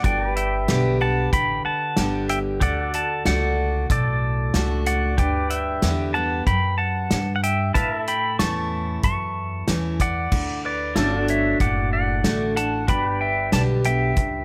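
Honky-tonk and classic country in D major at an easygoing 93 BPM, this nostalgic excerpt features a bright, up-front pedal steel guitar carrying the melody with fingerpicked slide phrases and volume swells, over a second, mellower pedal steel holding sustained chords, a full-bodied picked dreadnought acoustic guitar, a woody, thumpy pizzicato upright bass on gut strings, and a natural small-room drum kit with punchy kick, medium-tuned snare, hi-hat and crash, all in light reverb as the chords move from G through D and A before a new section begins at 10.3 seconds.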